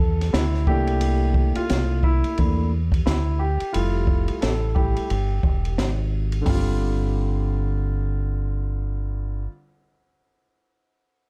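A mellow, vintage baby grand piano with long sustain takes a solo over round, deep dub fingered electric bass from the start of this smoky, nocturnal jazz-hop fragment in G dorian at 88 BPM with swung 16ths, moving through Dsus2, C13 and Fmaj9 as an open acoustic jazz kit with dark cymbals, a high-tuned snare and a boomy kick plays from 0.2 to 6.7 seconds, before piano and bass settle on G5 until 9.5 seconds, all in a dry, warm production.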